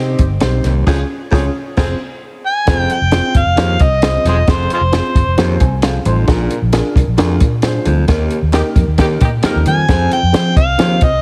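Heavily compressed and radio-like, with light studio reverb, this brief cut from a longer uptempo 1960s-style soul piece in F minor drives along at 133 BPM with an urgent, straight 4/4 feel. A compact cocktail drum kit sits up front, its punchy kick, high-tuned snare and dark cymbals rounded by a rolled-off top, while soft-handed congas ring very quietly in a close, dry space beside it. A vintage, foam-muted fingered electric bass lays down a round, amped low end, and a dark upright piano adds woody, boxy, slightly detuned accompaniment. A mellow baritone saxophone plays a smooth riff in the background, and a saxophone section with jazz-style vibrato supplies a second line in two short passages, returning at 8.5 seconds. The overdriven harmonica takes the gritty, amplified melody from 2.5 seconds, full of tongue slaps and scooped notes. The band punches out accents together, and the piano slips in a short fill at 5.6 seconds.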